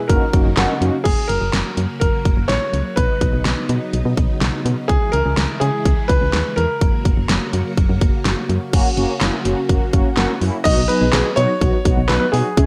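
Bright and upbeat, this synth-pop excerpt moves at 125 BPM in 4/4 with a straight feel in B major, cut from a longer piece. A clear concert grand piano carries the melody up front, its smooth, vintage tone touched with delay, while a shimmering string machine with violins holds sustained chords in the background through an ensemble chorus until about 10.6 seconds. A solid FM bass anchors the low end with a punchy, round, dark digital tone, and a pop drum kit sits up front with a punchy kick, fat snare, handclaps, hi-hat and crash cymbal, all dressed in gated reverb. A mellow synth brass offers brassy, detuned sawtooth accompaniment with chorus, phaser and a filter sweep, appearing briefly at the start and returning at 8.7 seconds. The harmony moves from F# through Badd9 and C#m before settling on B, all placed in a light reverb.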